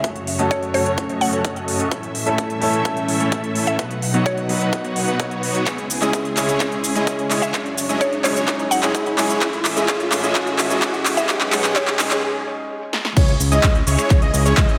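Anthemic and euphoric, this festival progressive house excerpt runs at 128 BPM in 4/4 with a straight feel, centred on C# minor and moving through F#m, A, B and C#m. A long build-up fills the first 13.2 seconds, with a woody, round mallet-like synth pluck carrying the melody through chorus and delay, an intimate concert grand piano with audible action noise pumping under sidechain, and distant, bowed studio strings holding lush sustained chords. A huge, detuned supersaw riff sits in the background, tinted by cassette tape and swept by a low-pass filter across the build, while a riser climbs beneath from 1.8 seconds. The punchy, tape-warm kick and big-room drum kit, with crisp hats, snare, claps, snaps, shaker and cymbals re-recorded in a large room, sit up front and drive a fill before a short break at 12.2 seconds. At 13.2 seconds the drop hits, bringing in a thick, bold unison lead playing arpeggios with vibrato and lush chorus, alongside a fat, detuned analog bass on C#2. 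A moderate, lush hall reverb surrounds the mix.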